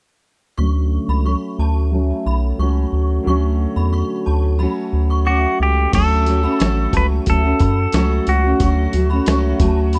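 Indie pop with a bedroom pop haze, this dreamy, nostalgic excerpt moves at 90 BPM in a straight 4/4 in D major, opening on a Dmaj7 chord. From 0.6 seconds a fingerpicked steel-string acoustic guitar sits up front, full-bodied with fresh strings, its tone drifting and warbling under subtle chorus and a low-pass filter that sweeps until 5.9 seconds. Beneath it a round analog bass gives a deep, dark foundation, while a faint FM synth chime rings high above with inharmonic, decaying tones smeared by ensemble chorus and tape echo. At 5.3 seconds a clean lap steel guitar takes the melody, twangy and bright, sliding with volume swells. A dusty, gritty sampler-style drum kit arrives at 5.9 seconds with a thumpy kick, medium-tuned snare, hi-hat and crash, all captured in a dry, close 1970s-style studio sound.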